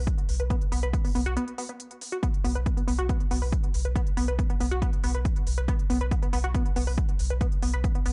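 Dry, gritty and dull at the top, this excerpt of intense, driving peak-time techno at 139 BPM sets a heavy, overdriven, up-front kick and smooth, overdriven hi-hats alongside a deep, round sine sub bass with overdrive, sidechain pumping and a low-pass filter, while a tight, detuned sawtooth-and-square sequenced synth riff with a filter pluck, chorus, cassette-tape color, sidechain pumping and analog delay enters at 0.4 seconds over a B5 chord, with a brief break from 1.4 to 2.2 seconds.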